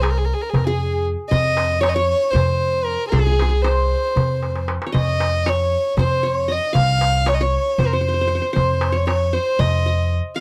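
A dry, close 1970s-style studio sound frames this stately, passionate Turkish makam excerpt in 7/8, where a dark, intimate violin with light vibrato and an airy bow leads up front over a bright-edged, fingerpicked qanun, a woody, thumpy pizzicato upright bass on gut strings, and a crisp, band-limited metal-shell darbuka played with hard hands that adds a brief fill at 4.4 seconds.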